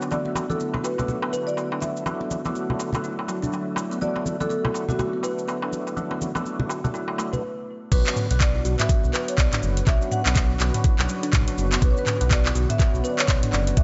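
Afro house at 123 BPM in B minor, earthy and spiritual, where a detuned analog pad under a filter sweep, woody thumb-plucked kalimba arpeggios and lightly overdriven tonewheel organ stabs through a slow rotary speaker all pump to the sidechain beneath a dry, close-miked marimba melody with dub echo, while a produced afro-pop kit with metallic hats carries throughout and crisp metal-shell darbuka and congas fall away just before a brief stop at 7.4 seconds, leading to a drop at 7.9 seconds where a smooth sawtooth synth bass and an up-front knocking electronic kick enter.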